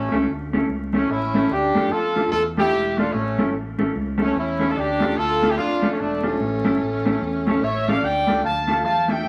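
Ska at 147 BPM in 4/4 with a swung eighth-note lilt, this short excerpt cut from a longer piece has a driving, mischievous mood in D harmonic minor, moving between A and D minor chords. A horn section carries the melody up front, its sound punchy and present with a light vibrato and a pop-style ensemble blend. Beneath it, a fingered electric bass plays low and dark, round and punchy in tone though sitting well back in the mix. A mellow electric guitar supplies accompaniment from 0.1 s, clean and compressed with a dusky colour, dressed in spring reverb and tape echo. The whole recording sits in a small, reverberant room with vinyl crackle lending an aged, crackling surface, and the passage ends at 9.3 s just after a repeat of its opening section begins at 8.0 s.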